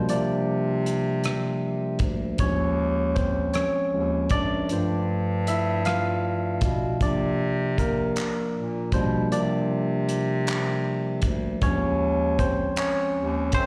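Rolling along in a slow, straight six-eight, this tender, sensual R&B fragment is carried by a barky, clean tine electric piano heard through a combo amp, which takes the solo spotlight for the whole stretch over drifting C9sus4, Eb9sus4 and G9sus4 harmonies. Beneath it, a soft-attack bass clarinet in a roomy classical style holds down the low end, while a cloth-damped, thuddy drum kit with a tight kick, handclaps, hi-hat and rim click sits close with a rolled-off top, entering at 0.1 seconds. The sound is that of a live gig heard through the venue's PA, with light recital-hall reverb and studio ambience.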